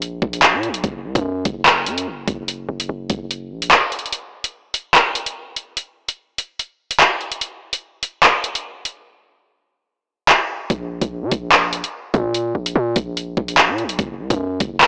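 Drill hip hop excerpt at 146 BPM in a half-time feel, cold and dark, with an electronic drum kit of knocking kick, metallic hi-hats and handclaps sitting up front with a tape-warm edge, a punchy, heavy sine 808-style bass with a noise layer and fast attack that drops out at 3.7 seconds and returns at 10.7, a brief break at 4.1 seconds after which the kick stays muted until 10.7 while the hats also fall away from 9.1, all set in a moderate plate reverb and a blown-out, overdriven, AM-radio sound.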